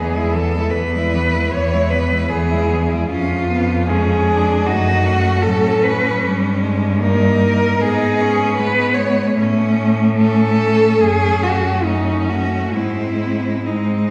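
A focused, up-front bowed cello sings the melody in this elegiac, solemn classical piece for cello ensemble, unfolding in a rubato 4/4 at 65-78 BPM and tuned to A4 = 444 Hz, joined throughout the 14.1 seconds by a second cello line, a smooth, even cello accompaniment and a rich bass cello, each a single player with vibrato, all heard from further back in a wet concert hall with a 2.1-second reverb as the harmony moves from E through C#7/E# and F#m to rest on G#.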